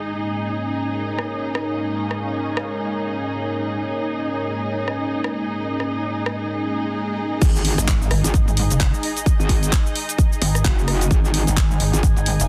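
A dense, heavily limited mix with light reverb opens on a bright, sweeping pad holding sustained chords, layered with a veiled, con sordino string section, both breathing with sidechain pumping in this bouncy, swaggering bass house cut at 130 BPM with a swung 16th feel. A house kit of handclaps, hi-hat, rim click, shaker and crash joins at 1.2 seconds with a filtered, small-room sound, and a very quiet electronic swell and impact follows at 6.6 seconds. At the drop at 7.4 seconds, a punchy, up-front kick arrives with a distorted, metallic FM wobble bass, and a heavy, detuned pluck wobble bass follows, the two bass lines driving the groove through the drop.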